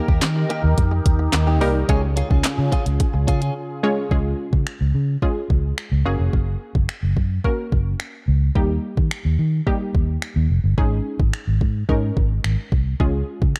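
A dark, dry production carries this upbeat, summery dance-pop excerpt, where a round, foam-muted fingered bass pumps beneath a lush, detuned unison pluck alongside a smooth R&B kit of soft kick, sharp snare, snaps and handclaps, while a warbling resonant pad, a bright direct-recorded clean guitar riff with analog chorus and a barely audible group handclap fill the opening before a brief break at 3.6 seconds.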